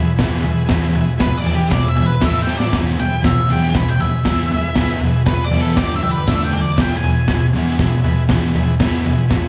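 A straight, rowdy 4/4 beat from a crunchy, saturated drum kit with a punchy kick and toms drives this raw garage rock clip, with a drum fill at 2.5 seconds, while an up-front, double-tracked fuzz guitar riff with slapback echo runs through E, A, G and D chords. An octave-fuzz lead guitar, dark and distorted with digital delay, carries the melody from 1.2 to 7.5 seconds, and a buzzy vintage combo organ holds overdriven, lightly vibrato chords in the background. The whole thing sounds like a live club gig heard through the venue's PA, with a light club reverb.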